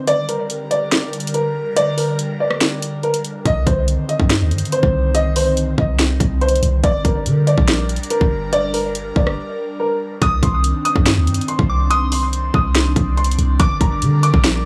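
A half-time trap beat at 142 BPM in 4/4 drives this brooding, melancholic hip hop piece in C minor, cut from a longer work. The electronic drum kit sits up front, with a hard-clipped kick, sharp snare, bright hats and rim clicks, all pushed through overdrive. A deep, boomy 808-style bass with a fast attack and sine tone arrives at 3.5 seconds, while a dark, worn baby grand piano carries the melody with tape echo and audible action noise that gives it a boxy, intimate feel. Beneath it, an airy, breathy pad holds sustained chords through chorus and phaser, moving between Gm and Cmadd9 with a slow attack and long release. At 10.2 seconds a soft, pure FM synth bell adds a gentle second line in the background, and light reverb places every part in a shared space.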